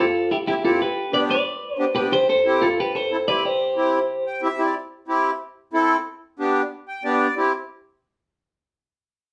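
Latin music with a danceable, sunny mood, this short passage is cut from a longer piece and moves in a straight 4/4 feel. A clean electric guitar carries the melody from the start until 4.6 seconds, its bright, twangy, picked tone sitting up front and given a compressed edge, along with spring reverb, slapback echo and plate reverb. Beneath it, an accordion plays the accompaniment until 7.5 seconds, reedy and up front with a slow beating quality in its tone. The accordion adds fills at 4.1 seconds and again near the end of the second section, by which point the guitar has stopped and the accordion carries on alone. The harmony moves simply between C and G, and the whole is heard from further back in a wet studio room.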